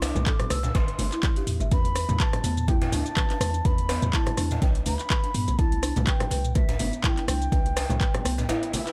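A swung groove drives this spiritual, propulsive afro house excerpt, built on a deep, up-front electronic kick, a produced afro-pop kit with metallic hats, handclaps, rim clicks, shaker and toms, bright, saturated congas played with soft hands, and a distant djembe with metal rattles in a large room. A boomy, sine-toned 808-style bass pumps with sidechain compression, while a woody, dark folk marimba plays rustic arpeggios with sidechain pumping and delay. Above them an airy bamboo bansuri carries the melody with vibrato and delay, and an electronic swell appears in the background at 8.7 seconds.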